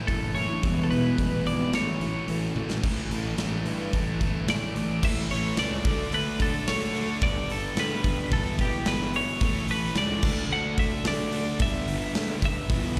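A twangy, compressed twelve-string electric guitar carries the melody with slapback echo through this angsty, dark quiet-loud alternative rock excerpt at 110 BPM. It rides over two thick fuzz guitar riffs, one of which drops out at 5.0 seconds, and a growly overdriven fingered bass. A punchy, up-front big rock drum kit with bright cymbals plays half time before a fill at 2.6 seconds. A dark fingerpicked acoustic guitar adds brief arpeggios in the background, and at 5.0 seconds a double-tracked overdriven electric guitar riff enters alongside a very quiet, reedy gut-string chamber section with light vibrato playing sustained chords. Everything sounds like a live gig heard through the venue's PA in a small room.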